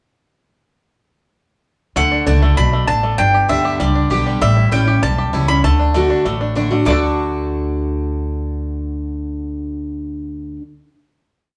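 A straight, driving pulse comes from the upright bass, plucked on gut strings with a thumpy, up-front tone as it plays a two-beat root-and-fifth line with walk-ups. This short, joyful and virtuosic bluegrass piece has the whole band start together at 2.0 s, playing live in one room with a wet, large studio reverb around them. The mandolin carries the melody in sentence-like phrases built from short motifs, its picked double strings giving a woody, close sound. The bright, full-bodied dreadnought guitar alternates bass notes and strums, adds bass runs, and lets slight finger squeaks through. The twangy, percussive banjo, played with fingerpicks, ripples three-finger rolls a little further back. After a single pass through a simple major-key progression, the group lands on a final chord at 6.9 s and lets it ring until the piece closes at 10.6 s.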